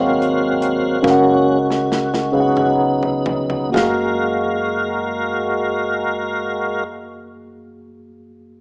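The tonewheel organ leads this reverent, soulful slow gospel excerpt in 6/8 at 41-50 BPM, up front and full with key click, chorus vibrato and a fast rotary speaker, taking a solo through the opening 3.7 seconds as the tempo slows and the drums play a fill. Beneath it, a mellow tine electric piano carries the accompaniment in F# major over chords moving from G#13 through C#7sus4 to F#maj9, while a dark, round fingered electric bass sits in the background and a modern studio kit with a tight kick and medium-tuned snare stops at 4.0 seconds. The rough home demo mix has a small-speaker sound, a moderate plate reverb and small room ambience.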